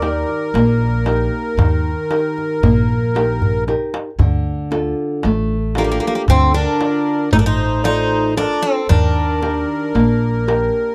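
Dark and melancholic, this short cut from a longer Greek folk piece for bouzouki band moves in 9/8 at 115 BPM in D phrygian, with the chords shifting from Eb to Dm at 4.2 seconds and back to Eb at 8.9 seconds. The metallic, double-strung bouzouki carries the melody up front, with some octave-doubled strings, over a reedy accordion second line with light tremolo tuning, a small fingerpicked nylon-string guitar, and a woody pizzicato upright bass on steel strings. A crisp, deep metal-shell darbuka, compressed and saturated, drives the percussion throughout and plays a fill from 3.4 to 4.2 seconds, all captured in a dry, close 1970s-style studio sound.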